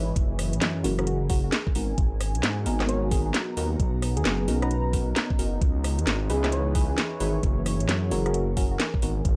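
This excerpt of two-step UK garage opens on a bed of sound: an ethereal, airy pad sits very quietly beneath a deep, moody ambient pad that pumps against the beat, while a dark detuned saw bass rumbles up front and a mellow chord stab, softened by analog chorus and tape echo, decays over a sweeping filter. At 0.2 seconds the knocking electronic kick and a garage kit with a cracking snare, rim click and metallic hats arrive, tape-warm and up front, giving the groove its bouncy, skippy swing. A round, gentle, keys-like synth lead enters at 0.8 seconds, its struck notes carrying vibrato, chorus and echo. The harmony moves through F#9, G#m7, Bmaj7 and C#m7 before returning to F#9. The whole is dry and gritty in the manner of hardware gear, with a digital ambience around it.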